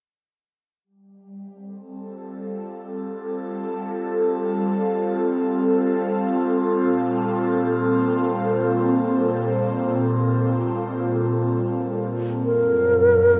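A breathy analog synth pad fades in from 0.8 seconds, its detuned sawtooth and noise layers shimmering through chorus and phaser as sustained chords move from G9sus4 to Bb5 in a serene, reflective ambient passage in free time and G minor, tuned to A4 = 441 Hz. At 12.5 seconds, as the harmony turns to F#maj7, a close-miked alto flute sounds a single A#4 with gentle vibrato and a slightly unsteady tone. A lush hall reverb with a 2.9-second decay soaks this dreamy fragment of a longer piece.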